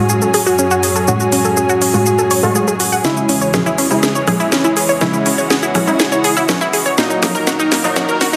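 A dense, heavily limited master in a wet hall reverb carries this dark, dramatic melodic techno excerpt in C# minor at 122 BPM, where a thick, detuned sawtooth pad with chorus sustains chords under bright, punchy unison pluck arpeggios through tape echo and brassy synth stabs colored by cassette tape, both shaped by filter sweeps, while a warbling, lo-fi tape-like pad sits mellow in the background and an up-front, overdriven techno drum kit with a cracking snare, smooth hats, congas and shaker enters at 0.1 s and plays a fill from 3.0 s as the build-up moves through F#madd9, C#m/E and D#m.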